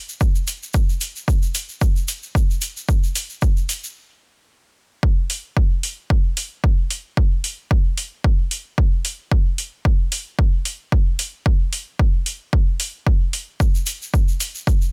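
A grainy, bright tube shaker opens this hypnotic, nocturnal techno cut at 112 BPM in 4/4 with a 55% swing on the sixteenths, joined by a punchy analog kick drum and a layered, metallic, overdriven hi-hat, both up front, before a brief stop at 4.0 seconds, after which the kick and hats carry on alone until the close, dry shaker returns at 13.6 seconds, all in a dry space with a dense, heavily limited modern master.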